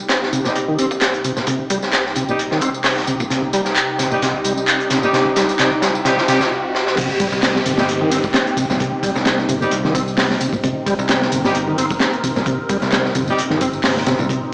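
Breakbeat cut from a longer piece, energetic and swaggering at 131 BPM in C minor with a swung sixteenth feel, where a crunchy, saturated breakbeat kit with a punchy kick, high-tuned snare and dark cymbals sits up front beside an analog drum machine's tape-warm handclaps, ride and tambourine. A reedy tonewheel organ riff with key click, slow rotary speaker and delay is joined by clear horn stabs, both filter-swept through a build-up that breaks at 6.5 seconds, while a swirling, detuned sawtooth pad pumps underneath and a very quiet riser and downlifter drift in from 2.8 seconds. Just after the drop at 7.0 seconds, a bright picked electric bass enters at 7.3 seconds, all heard as if played on a big sound system in a bare stone room with small-speaker coloring.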